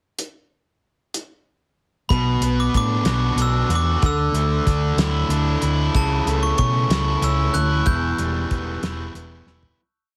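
Upbeat yet wistful, this short, complete indie rock piece moves in 6/8 and opens with a cloth-damped drum kit playing a pickup bar alone. Its fat snare, tight kick, hi-hat and toms sit up front with a thuddy, small-room character and a rolled-off top. At 2.1 seconds a bright, compressed fuzz guitar arrives with distorted picked arpeggios, and a round, dark hollow-body bass adds a driving eighth-note line beneath. A glockenspiel struck with brass mallets carries sparkling, bell-like hook phrases with a slapback echo as the harmony moves through Bm, Dsus2, A/C# and Em. The mix is dry and heavily compressed like a radio broadcast, fading out from 7.9 seconds while a drum fill closes things at 9.5 seconds.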